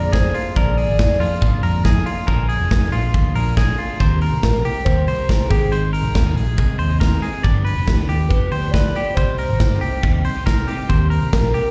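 Bright and breezy, this jangly indie pop excerpt moves at 139 BPM in Eb major, heard as a live gig through a venue's PA with recital-hall reverb. A big, punchy rock kit sits up front over a dark, round, foam-muted picked bass, while a twangy clean electric guitar accompanies through lush chorus, plate reverb and slapback echo, and a second compressed clean guitar carries arpeggios with plate reverb, slapback echo and delay. A swirling, detuned analog pad with phaser hums very quietly until 2.2 s, and a warbling, nostalgic lead with vibrato sings the melody, pausing after 1.8 s and returning at 4.4 s.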